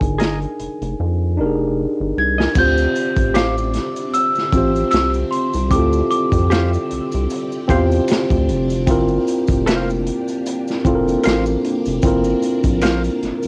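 R&B and neo-soul in D minor at 76 BPM, this late-night, smooth excerpt swings gently over a crunchy, saturated breakbeat kit with dark cymbals and a punchy kick, a rubbery, bouncy square bass up front, and a worn, slightly out-of-tune tine electric piano, all carrying a cassette-tape grain except the bass. A bell-like large celesta sings the melody until 7.6 seconds while a clean, fingered semi-hollow electric guitar plays a second line, and a drum fill from 1.0 seconds leads into a lush string machine with phaser and ensemble chorus, joined by distant maracas and finger snaps at 2.5 seconds. The chords move from Fm11 to Dm11 and then Gm11, all in a light reverb with a homemade cassette feel.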